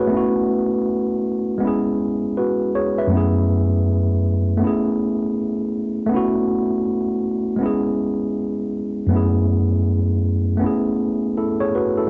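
Melancholic and reflective, this hip hop excerpt at 80 BPM in F# minor features a solo tine electric piano, worn, slightly out of tune and lightly overdriven, playing alone from 0.0 to 12.1 seconds with a swung sixteenth-note feel. Its up-front, built-in-speaker tone passes through a low-pass filter as it cycles twice through B7sus4, C#m7, F#m11 and Amaj9. The dry, gritty cassette recording sits in a small room with moderate reverb, its top end rolled off above 7.8 kHz.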